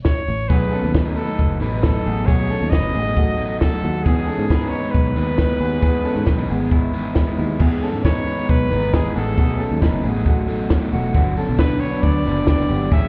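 Youthful and breezy, this short cut of jangly indie pop at 135 BPM sets a clear, close-miked trumpet melody with vibrato and slapback echo over a round, foam-muted picked bass and a dry, up-front cocktail drum kit with a punchy kick, high-tuned snare and dark cymbals, while from 0.5 seconds a crunchy overdriven guitar plays picked chords through B7, Emaj7 and Gmaj7 and a twangy, slightly broken-up electric guitar through a small old amp picks arpeggios with its own slapback echo, the whole mix sounding muffled as if heard through a wall in a stone room.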